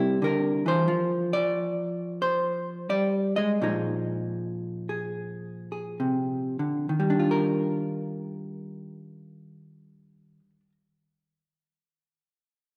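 A vintage hollow-body jazz guitar plays alone and up front, its clean, dark electric tone picked in a relaxed, swinging solo jazz performance in Eb major. The tempo drifts between 64 and 91 BPM in 4/4 with a swung eighth-note feel, and the playing slows down between 0.9 and 6.9 seconds. The harmony moves from C7 through Fsus2 and Bb9sus4 before settling on Ebmaj9 at 6.9 seconds, where a new section begins. The guitar spans from Bb2 up to Eb5, reaching from its low register into its upper notes. A wet recital hall reverb surrounds the instrument, giving the sound the spacious bloom of a church or concert hall. This brief fragment, about 10.7 seconds long, is cut from a longer piece.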